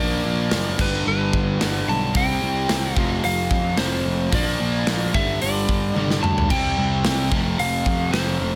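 Light reverb and small room ambience surround this energetic, anthemic hard rock clip, cut from a longer piece and played at 110 BPM in a straight 4/4, tuned to A4 = 445 Hz. A crunchy, bright, double-tracked overdriven guitar sits up front with its riff over a growly, punchy fuzz bass, while a slightly broken-up, compressed lead guitar carries the melody with slapback echo across the Bb, G, C5 and F5 changes. The big acoustic rock kit, with its punchy kick and bright cymbals, enters at 0.5 seconds and drives a drum fill from 6.0 to 6.5 seconds.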